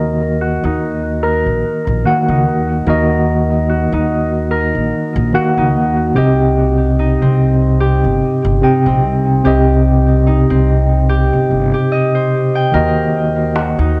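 A clean, up-front tine electric piano with tremolo and tape echo opens this melancholic, cinematic trip hop excerpt at 73 BPM with a swung 16th-note feel, joined from the start by a ringing, fingerpicked Celtic harp roughened with vintage 12-bit sampler grit, a low-pass filter sweep and tape echo, and by a woody, thumpy pizzicato upright bass on gut strings with tube saturation, the harmony moving from Eb minor to C minor and back before a deep clay-shell darbuka played with soft hands appears at 13.6 seconds, the whole mix sitting in light small-room reverb and worn, warbling cassette tape with drifting pitch.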